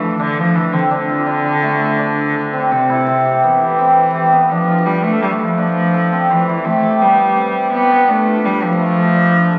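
A bright, shimmering cimbalom spins ringing arpeggios up front while a rich cello carries a second line with a nasal, gut-string tone in period style, both playing throughout this short cut from a longer contemporary chamber piece. The mood is hypnotic and pensive, moving at 167 BPM in an uneven 5/4 with a straight feel in D dorian. Harmony shifts from Dm7 to Cmaj7 at 2.7 seconds and settles on Dm at 8.1 seconds, all heard through a wet recital hall reverb and the crackle and dull top end of a very old 78 rpm record.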